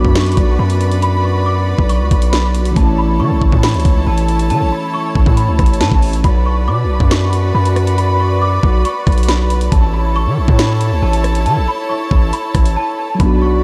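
Ominous and dark, this half-time drill hip hop excerpt sets a delicate, bell-like celesta melody, treated with ensemble chorus and tape echo, over sustained chords from a biting, earthy string section with light vibrato. A mellow tine electric piano with lush chorus accompanies until 6.3 seconds and returns at 13.1, while a heavy, saturated 808-style bass sits up front beneath a drill kit of knocking kick, sharp snare, metallic hats and rim click, roughened by vintage 12-bit sampler grit. A brief break arrives at 12.8 seconds, and the dreamy mix is soaked in huge ambient reverb.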